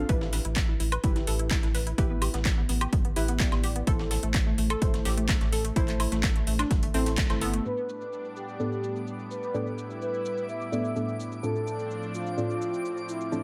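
Light reverb and digital ambience give this driving, expansive progressive house excerpt, cut from a longer piece, an open sheen at 127 BPM in a straight 4/4. A punchy, overdriven electronic kick leads the drums, backed by a house kit with metallic hats, cabasa, handclaps and woodblock, both re-recorded in a large room, while a gritty, compressed breakbeat kit with a high-tuned snare sits in the background. A round, dark analog bass and a detuned analog pluck playing bright arpeggios pulse with sidechain pumping over Em and Am, joined by a deep, mellow chord stab carrying chorus and tape echo. At 7.6 s the bass and pluck drop out, and at 7.7 s the harmony moves through Gadd9/A and Dm7/A as a filter sweep opens on the stab. A smooth, expressive synth lead with vibrato and vintage 12-bit grit takes the melody over a lush, thick, warbling unison pad. From 8.0 s a twinkling granular texture adds a high, sparkling shimmer.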